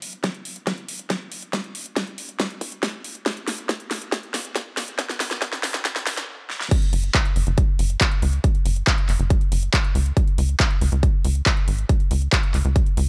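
A dry, close mix with its low end trimmed by a high-pass filter, this uplifting trance clip is cut from a longer track and carries a euphoric lift. A big-room dance drum kit opens with a fill running through the build-up. Its huge snare, handclaps, metallic hats and crash cymbal sit up front, with the hats and cymbals pumping against the sidechain. An electronic kick drum enters at 0.2 s, layered, punchy and high-pass filtered, and both it and the kit are overdriven. After a brief stop, the drop arrives at 6.7 s, and a tight sequencer bass comes in at 6.9 s: a nasal blend of sawtooth and square wave with a fast-attack filter pluck that decays into a mellow tone, pumping with the sidechain. In a straight 4/4, the driving drop carries the joyful energy to the end of the clip.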